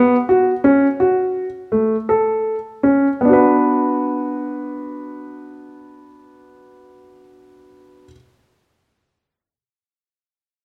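Restless and pensive, this brief contemporary instrumental fragment in B minor and 9/8 sets a warm, smooth, vintage grand piano up front and alone in a moderate recital-hall reverb, moving from a rootless Bsus2 to A and onto Bm around 3.2 seconds while the tempo, roughly 156-172 BPM in eighths, slows through the opening 3.2 seconds before the piano stops at 8.2 seconds.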